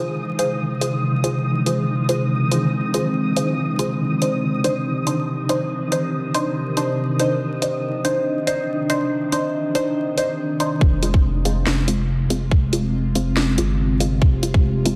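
A dense, heavily limited mix steeped in vinyl crackle and a moderate spring reverb sets up this heavy, brooding deep dubstep excerpt in F dorian at 141 BPM with a swung half-time feel, moving from Fm to Cmadd9 and back. A resonant sawtooth drone with moving overtones and chorus sits under muted, detuned dub chord stabs carrying phaser and dub echo, both under filter sweeps, while a grainy, flickering triangle texture and a garage kit with a cracking snare and warm hats fill out the opening. At 10.8 s the texture stops as a thick, saturated sine sub bass and a tight, up-front electronic kick arrive for the build-up.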